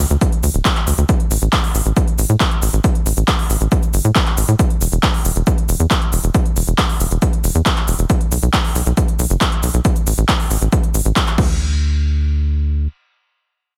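A driving 137 BPM in straight 4/4 propels this euphoric, uplifting trance excerpt, cut from a longer piece and opening squarely on the drop, which runs to 11.6 seconds. A punchy, overdriven electronic kick sits up front, joined by a big-room dance drum kit of crash cymbal, handclaps, crisp hi-hats and shaker, both layered and given overdrive, with the sense of having been re-recorded in a large room. Alongside them, a tight sequencer bass blends sawtooth and square-wave tones with a fast-attack filter pluck that decays into a mellow body, ranging from D1 to A2 and colored by tube saturation and sidechain pumping. The drums drop away at 11.5 seconds, leaving the bass to carry the brief closing section alone until it stops at 12.9 seconds. The mix is dry and close, with little reverb, keeping every part forward and immediate.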